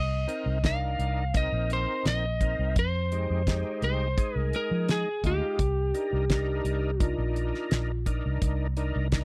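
A straight-eighth groove at 85 BPM in 4/4 drives this brooding, soulful soul blues fragment in C minor, cut from a longer piece. The damped 1970s drum kit sits up front with a fat snare, tight kick and hi-hat, while the foam-muted fingered electric bass adds a dark, round, punchy low end. A slightly broken-up, picked lead guitar carries the melody until 8.0 seconds, its compressed tone placed close and forward. Entering at 0.3 seconds, a gritty, thick tonewheel organ fills in the accompaniment through a slow rotary speaker with chorus vibrato. The harmony moves from Cm7 to Fm7 at 2.8 seconds and back to Cm7, all captured in a dry, close 1970s-style studio sound with small room ambience.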